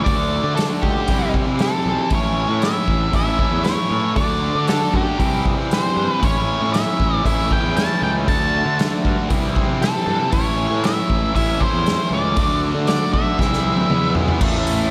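Driving and gritty, this blues rock cut with a southern rock lean moves at 117 BPM in a straight 4/4, heard as a piece lifted from a longer track. A biting, bright overdriven guitar plays the riff, double-tracked and up front with slapback echo, while a dark octave-fuzz lead guitar carries the melody from G4 to A5, its distortion also tinged with slapback. Underneath, a growly fuzz bass played with the fingers sits between A1 and D3, and a vintage acoustic kit with a boomy kick, a medium-tuned snare, dark cymbals and a rolled-off top pumps in its small room. The chords cycle through D, C and A before landing on E, and a drum fill from 13.4 to 14.4 seconds leads into a very quiet, fat tonewheel organ with vibrato and key click that appears only at 14.4 seconds. A lush hall reverb over the small room gives the whole band a big arena sound.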